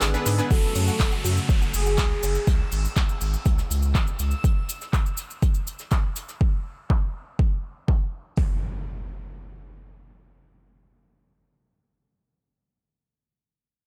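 A straight 4/4 pulse drives this dreamy, expansive progressive house passage, cut from a longer piece, with a deep, layered electronic kick up front and a thick, saturated sine sub bass beneath it. An electronic deep house kit adds handclaps and smooth, filtered hats, joined by a grainy, bright cabasa heard close and a dark brushed acoustic kit of snare and hi-hat tucked into the background. During a short opening break, a punchy, detuned supersaw stab rings out, while a soft, round pluck plays chorused arpeggios and a smooth analog pad holds sustained chords, both pumping and both given a filter sweep once the break ends at 0.5 s. A velvety sawtooth lead with vibrato and a touch of 12-bit grit enters at 0.5 s, as a reversed, granular texture swells softly high in the background. A filter sweep runs across the drums, an electronic downlifter and impact mark the move into a new section at 8.4 s, and the overall sound stays dry and close.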